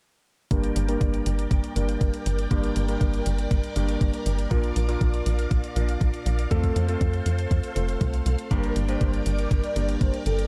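Melodramatic and danceable, this italo disco excerpt in G minor moves at 120 BPM in a straight 4/4, with a tight, punchy sawtooth sequencer bass driving up front under a thumpy, tape-warm electronic kick and a sampler-style hi-hat, both re-recorded in a small room. A lush string machine full ensemble holds bright sustained chords through phaser and ensemble chorus, while a vintage electric grand piano with a clangy low end plays stabs with delay and a filter sweep across the chords Gm, Bb and F. At 8.5 s a round, detuned synth brass enters with a brassy melody coloured by chorus and vibrato, all set in a dark digital ambience.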